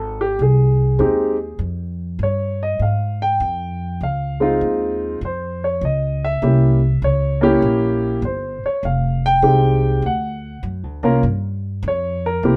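Light reverb gives this smoky, moody jazz excerpt in F minor an intimate sheen as a warm, deep-bodied concert grand piano carries the melody up front at a swung 100 BPM over Fm7, Dbmaj7 and C7b9 harmonies, while a woody, thumpy upright bass on gut strings plays pizzicato close beneath it for the full 12.6 seconds.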